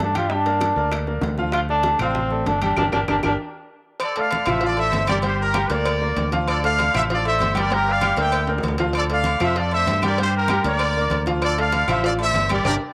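Drenched in a wet spring reverb, this fiery, passionate salsa cut from a longer piece opens with a brilliant, forceful solo trombone up front, carrying light vibrato over a clear, vintage grand piano with short sustain and a dark, round fingered electric bass. Bongos and cowbell, low-tuned congas, ringing timbales with agogo bells and woody claves sit in the background throughout, with a drum fill and a band accent from 2.8 s to 4.0 s. At 4.0 s a bright, punchy trumpet section takes over the melody, riding the Gm and Dm changes until a final fill and accent at 12.7 s.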